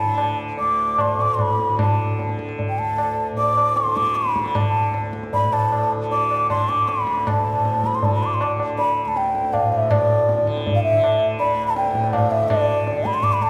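A breathy, hollow bansuri carries a longing, solemn Hindustani melody in raga kafi on D, up front and close with vibrato, over a buzzing tanpura drone and low-tuned, ringing tabla that enters at 0.2 seconds, all in 7/4 with a tempo that speeds up from 148 to 166 BPM in a wet scoring-stage reverb, cut from a longer piece.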